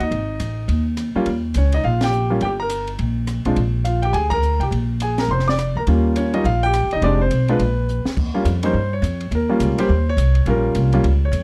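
A clear, up-front concert grand piano, a woody pizzicato upright bass and a compact cocktail drum kit open this playful, sophisticated jazz trio fragment together, swinging in 4/4 at 208 BPM in Eb mixolydian. The band hits accents at 2.0 seconds, and the harmony moves through Bb7, Eb7 and Fm7 before a drum fill at 7.9 seconds. The piano then takes a solo from 8.2 seconds over Eb7, while the quieter kit, with its high-tuned snare, punchy kick and rolled-off top, sits under light reverb in a dark production.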